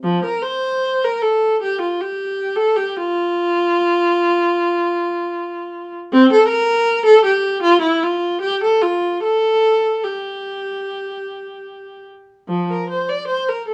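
Serene and radiant, this baroque-style suite movement for unaccompanied viola unfolds in F major at a flexible, rubato pace of around 69 to 82 BPM in 4/4. A single bowed viola plays alone throughout its 13.7 seconds, its rich, smooth, even tone carrying vibrato and spanning F3 to D5. The production is dark and warm with light reverb, giving the viola a sound that feels up front yet distant, and the clip is cut from a longer piece.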